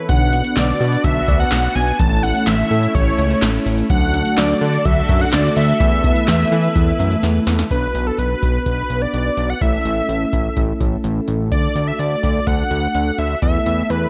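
A nocturnal, melancholic synth-pop fragment in a straight 4/4, cut from a longer piece and moving through a brooding minor progression that settles on a suspended chord each time around. A bold, detuned unison lead carries the melody up front with vibrato and tape echo, while a fat, wave-folded analog bass and an electro drum machine sit equally forward, the machine delivering a deep kick, punchy snare, metallic hats and handclaps with gated reverb and a tape-warm edge. Mellow, brassy synth chords with chorus accompany throughout, and in the first half a sweeping resonant pad with ring modulation and a soft, round plucked arpeggio with tape echo glow in the background. Those two parts stop at 7.7 seconds, just after a drum fill, leaving the lead, bass, brass and drums to carry the second section over the same chord cycle. A light reverb gives the whole a gentle sense of space.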